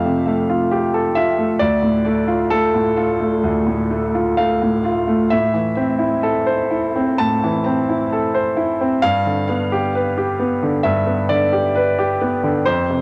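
A concert grand piano plays alone from the first second of this intimate, reflective neoclassical minimalist excerpt, moving rubato at 66 BPM in 4/4 through Fadd9, Dm, Am and G, its brilliant, polished, up-front tone carrying deep bass and short sustain, touched by tape echo and set in a wet studio reverb with the character of a home cassette recording.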